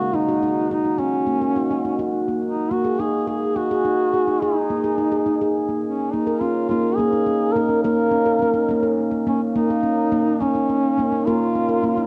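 Set in a lilting 6/8 at 70 dotted-quarter beats per minute with a straight feel, this gentle, hypnotic world-music excerpt runs 12.1 seconds, cut from a longer piece and tuned to A4 = 436 Hz. A stainless steel handpan, struck with soft fingertips, rolls out ringing arpeggios throughout, its tone mellow and meditative, colored by a cassette tape sheen and an analog delay. Over it, a duduk carries the melody in a solo folk style, its voice present and wavering with vibrato, also touched by cassette tape. Both sit up front in the mix, bathed in a wet spring reverb that lends the home cassette recording a cozy, lived-in ambience. The harmony drifts from Gb6 to Ab5 and settles on Bbm, keeping the mood calm and trance-like.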